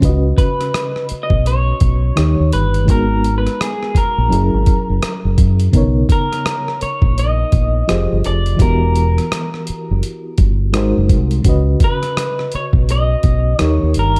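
A dark, dry production frames this relaxed R&B and neo-soul piece in B major at 84 BPM with a swung 16th-note feel, where a gritty, tape-warm boom bap sampler-style drum kit with a thumpy kick, hi-hat and rim click sits up front beside a round, deep dub fingered electric bass, a mellow FM electric piano with tremolo carries chords such as C#9sus4, G#m9 and Bmaj9, and from 0.4 s a slightly broken-up, lo-fi electric guitar through a small old amp plays the melody through a lush chorus.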